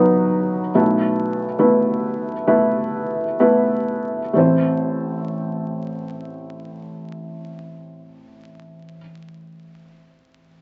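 Folk in a reflective, melancholic mood, carried entirely by a solo felt-muted upright piano that sits up front with a soft, intimate, mellow tone across its range from A1 to C5. The opening passage slows as it moves from B through Esus4/B before settling on A minor at 4.3 seconds. A moderate studio reverb surrounds the piano, while the crackle and dulled top end of a very old 78 rpm record give this short excerpt, cut from a longer piece, a worn, faded character.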